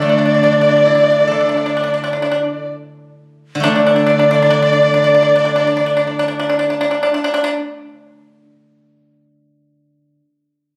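Chinese traditional chamber music in a festive, graceful mood, this short excerpt moves in a slow 4/4 between 57 and 75 BPM, easing down over its first 3.7 seconds. A reedy large dizi carries the melody with a buzzing, crisp attack and vibrato, while a clear erhu adds a nasal, focused second line with portamento. A dark cello bowed sul tasto sits intimate and close beneath them, and a bright, percussive pipa played with fingerpicks sounds up front in the mix. The dizi, erhu and cello stop at 6.7 seconds, the pipa carries on to 7.6 seconds, and a silvery, ringing steel-string zither continues its accompaniment alone until 10.2 seconds. Captured on a phone in a recital hall with moderate reverb and compression, the sound keeps a studio ambience.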